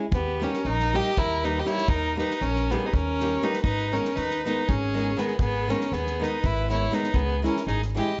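A bright, fingerpicked flamenco guitar opens this bittersweet, virtuosic Balkan wedding-band excerpt in 7/8, its finger squeaks audible. A dark, woody fiddle then carries the melody up front with light vibrato, over a second bowed violin line with a softer attack and vibrato. Underneath, a growly, thumpy pizzicato upright bass on steel strings and an acoustic drum kit played with bundle sticks, with a punchy kick and a medium-tuned snare, underpin chords that move from D# to G#m to C#m, all in a light reverb with a mellow top end.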